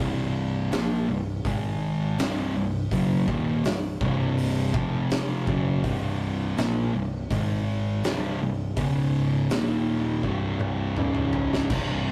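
A double-tracked fuzz guitar sits up front in this ominous, sludgy slice of stoner and doom metal, grinding out a low riff in C minor at 82 BPM in straight 4/4. Its picked, distorted tone is warm and thick, moving mostly through power chords on C, Ab, F, Db and Eb. Beneath it, a picked electric bass with overdrive stays in the background, growly and punchy with a bright, direct edge. An oversized, low-tuned acoustic drum kit comes in at 0.7 seconds, gritty and saturated, with a boomy kick, a fat snare, hi-hat, crash cymbal and toms in a big, pumping room sound. A drum fill from 10.2 to 11.7 seconds rounds off this short section cut from a longer piece. The whole take has the rough feel of a rehearsal-room recording, with tube saturation and a moderate small-room ambience.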